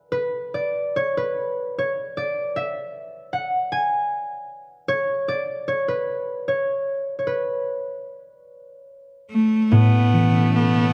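In a rubato 6/8 at about 50 BPM with uneven beats, this tender, pastoral Celtic slow air in A major opens with a ringing, fingerpicked concert harp playing alone up front until 9.7 seconds. A bright, biting cello with light vibrato and an earthy, nasal edge takes up the melody at 9.3 seconds. A focused solo fiddle and a very quiet, lush string section holding sustained chords join on an Aadd9, all set in a moderate recital hall reverb with a dark production, in this fragment cut from a longer piece.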